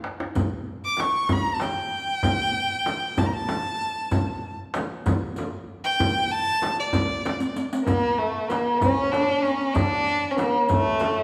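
Persian modal ensemble music in 6/8, this short cut from a longer piece feels hypnotic and full of longing. A tombak opens with a brief fill, joined almost at once by a deep, large frame drum and a riq whose dark jingles sit in the background, all three carrying a vintage, band-limited character. A single bowed violin, rich and up front yet with a distant quality, enters at 0.8 seconds and sings an expressive line spanning A3 to D6, shaped by vibrato and portamento. After another drum fill, a hammered santur arrives at 7.9 seconds as a second line, its shimmering, ringing tone staying low between A3 and D4. The tombak keeps a tight, warm presence throughout, and the whole ensemble sits in the wet reverb of a recital hall.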